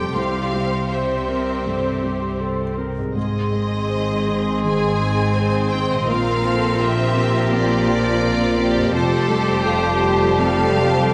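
A wet scoring-stage reverb surrounds this uplifting, moving cinematic film score for orchestra, taken from a longer piece and moving at a rubato 82 BPM in 4/4 over chords of C, Ab, Bbadd9 and Fadd9. A rich, lush violin section carries the vibrato-laden melody, while an airy, crisp-attacked flute section, a solo clarinet and a second, smooth-topped violin section weave second lines above a clear, intense viola section and a felt-muted upright piano with audible action noise. Underneath, a dark, distant French horn section holds sustained chords, a very quiet thumb-plucked concert harp rings out arpeggios, and a focused cello section joins a woody double bass section on the bass, with every part playing throughout.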